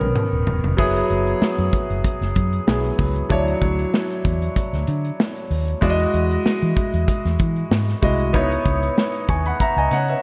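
A drum fill opens this short cut from a longer piece before the groove settles in at 0.8 seconds, setting a polished 1980s jazz-funk pop mood that feels nocturnal and urban with a light swing in the sixteenths. The modern studio drum kit sounds acoustic and smooth, with a tight kick, a medium-tuned snare, hi-hat, toms and crash, all dark and rolled-off at the top yet placed up front. Beneath it, a vintage fingered electric bass is foam-muted, round and punchy, its amped tone warm and dark. A clear concert grand piano carries the accompaniment with deep bass, natural long sustain and a lush chorus effect, voicing rich ninth chords that move from Bmaj9 through F#9sus4, Dmaj9 and Emaj9 to C#m9. A moderate hall reverb and bright digital production give the whole a glossy, spacious sheen.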